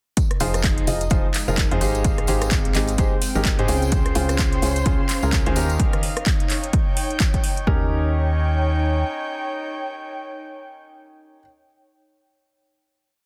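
Piano house at 128 BPM in Eb mixolydian, feel-good and joyful with a swung sixteenth groove, where a punchy, overdriven four-on-the-floor kick and a house kit of metallic hi-hats, handclaps and rim clicks drive alongside a background tambourine, while a clear, worn grand piano plays a short-sustained rhythmic chord riff with digital delay over Fm7, Abmaj7, Dbmaj7 and Eb7; a hollow, organ-like FM bass follows the chord rhythm, an airy, breathy pad with chorus pumps beneath, and muted, veiled strings hold a high note from 3.9 seconds before the drums stop at 7.7 seconds, leaving a final chord to ring to the end in a dense, heavily limited mix.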